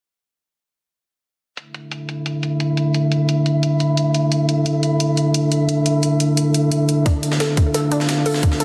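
A dense, heavily limited modern mix sits in a lush digital hall with audible lossy artefacts, carrying this short cut from a longer piece of dark, aggressive technical drum and bass in D minor at 175 BPM. Overdriven, bright electronic hi-hats enter at 1.6 seconds, and at 1.9 seconds an eerie, metallic, inharmonic FM drone arrives up front with slow-attack sustained chords, chorus and sidechain pumping. At 7.1 seconds a tight, up-front overdriven electronic kick, a gritty sampler-style breakbeat kit with hi-hat and a medium-tuned snare re-recorded in a small room, and a warbling, lo-fi, detuned pluck playing chorused, delayed arpeggios all join to sharpen the tension.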